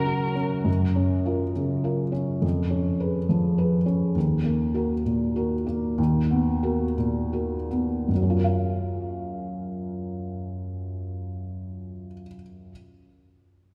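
In a rubato 3/4 that drifts between 78 and 105 BPM, this short neoclassical piano-and-strings fragment in F# major feels hopeful and intimate, easing into a slowdown from 3.3 to 8.1 seconds before a new section arrives at 8.1 seconds on an F#maj7 chord. A soft, felt-muted upright piano sits up front and carries the accompaniment for the full 12.7 seconds, mellow and warm, moving through harmonies such as C#7/E#, D#m and Bmaj7/D#. At the very start, a distant, veiled violin with vibrato touches a single melody note, and a very quiet, dark con sordino string section holds a brief chord, the violin gone by 0.5 seconds and the strings by 0.7 seconds, all set in the long, wet reverb of a church.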